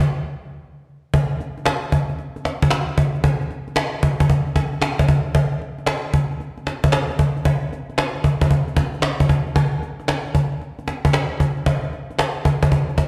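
A lone cajon carries this slick, bouncy R&B excerpt, entering at 1.1 s after a brief opening break and playing through to 13.1 s. Its tone is woody and acoustic, with faint snares in the mix, and it sits up front with the natural character of a live room. The groove moves at 114 BPM in 4/4, with a 65% swing on the sixteenths that gives the pattern its lilting push. A wet concert-hall reverb with a 1.8-second tail and a layer of studio ambience surround the part, lending the whole recording a big, arena-sized sound. Cut from a longer piece, the passage is a compact showcase for a single percussion voice set in a spacious hall.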